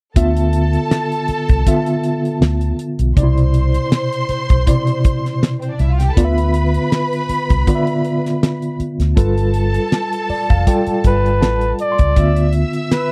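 Lush 1970s-style soul with a silky, cinematic mood, built on a reedy, slightly out-of-tune electric piano with fast tremolo, a dark, foam-muted fingered bass, and a dry drum kit with a fat snare and tight kick, all close and upfront in a dry studio sound. A bowed violin section adds a smooth, lush second line with vibrato, while the electric piano plays a fill from 9.9 s. At 11.1 s a flugelhorn enters with the melody, punchy and close-miked with scooped notes and light vibrato, before this excerpt is cut off from the longer piece.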